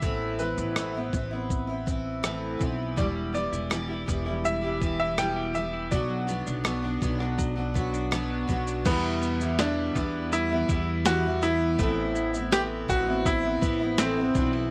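A bright upright piano carries the melody up front in this tender, reflective acoustic pop excerpt in E minor at 82 BPM, its intimate, woody tone ringing with long sustain and audible action noise. Beneath it, a full-bodied, double-tracked steel-string acoustic guitar is picked alongside a gut-strung pizzicato upright bass and a gritty, compressed soul sampler-style kit with a thumpy kick, rim click, shaker and crash, within a small room's reverb. A clean, scooped electric guitar recorded direct enters in the background with arpeggios at 3.0 s. The chords move from Amadd9 through Em and Bm before a new section begins at 8.9 s, returning to Em and then Amadd9.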